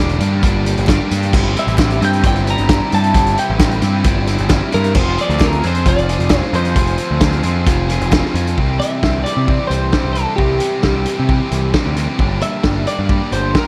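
A straight, driving 4/4 pulse from a loose indie drum kit keeps this upbeat, carefree indie rock clip moving, its punchy kick, medium-tuned snare, hi-hat and crash sounding gritty and saturated with a rolled-off top, sitting up front. Alongside it, a growling picked electric bass with overdrive sits prominently in the mix, bright and amped. A clean, compressed twelve-string electric guitar carries the melody with slapback echo and plate reverb. Two overdriven guitars drive the riffs beneath it: a cranked stack guitar with a bright bite, and a biting guitar set back in the background with analog chorus and slapback echo. A very quiet group handclap, crisp in a small room, joins at 0.9 seconds and drops out at 8.2 seconds, just before the harmony moves to a brighter C major chord at 8.6 seconds. The overall production is dark with light reverb, cut from a longer piece.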